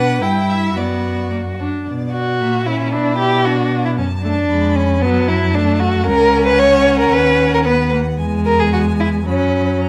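An up-front second violin leads the ear with a rich, expressive tone, soft attacks, vibrato and portamento, while the first violin carries the melody from a distance in a clear, focused voice. This graceful, cheerful classical-period string quartet excerpt moves at a quick 113 BPM in 2/4 in B minor, with the viola's vibrato-tinged accompaniment and the close, smooth, even cello bass filling out harmonies that pass from Bm and F#7/A# through F#m to E and F#sus4. Close, detailed microphones and light reverb keep each bowed line distinct.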